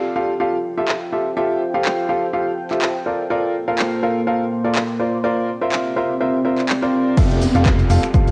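A swung 4/4 groove at 124 BPM, its sixteenths pushed to 55% swing, drives this short, uplifting piano house excerpt in F major. A clear, up-front baby grand plays the riff from the start, pumping with the sidechain and trailed by tape echo. Beneath it, a deep, moody pad with chorus and its own reverb sustains across Fmaj9, Bbmaj7 and C9sus4. The house kit enters at 0.9 s with bright, overdriven hi-hats, handclaps, finger snaps, shaker and crash, its filtered hats, cymbals and percussion colored by cassette tape. At 7.2 s the drop arrives: a punchy analog kick sits up front, a fat sawtooth bass holds a low F with sidechain pumping, and a downlifter sounds in the background as the chords return to Fmaj9. The whole mix carries a euphoric lift inside a lush hall reverb, with the character of a home cassette recording.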